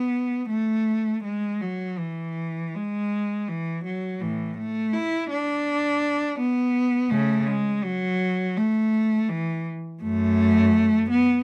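Flowing and serene, this brief excerpt from a baroque-style classical suite movement features a single rich, up-front cello playing solo throughout its 11.4 seconds in A major at 82 BPM in a rubato 4/4, its bowed lines expressive with vibrato, soft attacks and portamento, set in light reverb.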